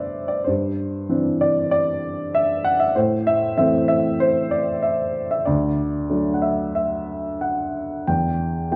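A woody upright piano plays alone and up front, opening a short fragment of a lyrical classical piece in a bittersweet, moody vein. The playing moves with a free, rubato feel in four, spanning from deep bass notes to the upper middle register, with the harmony passing through Cadd9/G, Am, D and Em before the fragment ends at 8.8 seconds. A moderate recital-hall reverb and a dark production give the solo instrument a gentle glow.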